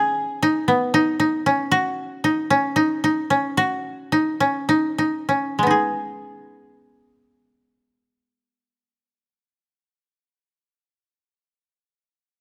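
Pensive yet urgent, this contemporary instrumental fragment from a longer piece features a solo koto in 7/8 at 198-232 BPM counted in eighths, centered in G# minor. Plucked with fingerpicks in the range G#3 to G#4, the koto sounds woody, dry and up front, captured by close, detailed microphones with light reverb. The harmony moves from G#m to D#m at 1.7 seconds, where the pace begins slowing until 5.6 seconds, when the music returns to G#m for its second section.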